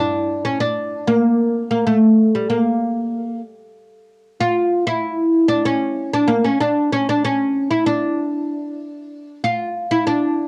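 Recorded dry at home on cassette tape, this short melancholic, soulful Arabic excerpt features a solo oud, fretless and plectrum-plucked with a woody, double-strung tone, carrying the melody up front for its full 10.5 seconds.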